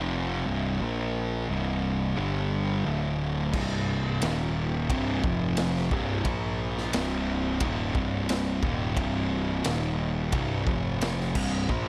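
Ominous and brooding, this stoner and doom metal excerpt in C minor moves at a straight 88 BPM in 4/4, as a dark, double-tracked fuzz guitar riff sits up front over a growly, overdriven picked bass, joined at 3.5 seconds by a gritty, saturated garage drum kit with a punchy kick and pumping small-room sound, all under light reverb, with power chords churning around C before a C minor chord arrives at 6.9 seconds.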